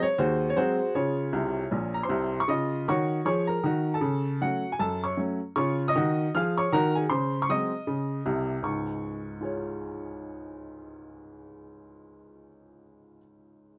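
A swung 4/4 pulse at 156 BPM drives this short, playful stride piano cut in Db major, taken from a longer piece and slightly below standard pitch at A4 = 438 Hz. A clear, woody upright piano plays solo and up front from 0.0 to 13.8 s, spanning Bb1 to F6 with a polished, present tone, and it adds a fill from 1.3 to 2.5 s as the harmony moves from Ab7 to Db and later through Gbm/Db and Ab7/Db. Light reverb colors an otherwise dry, close 1970s-style studio sound.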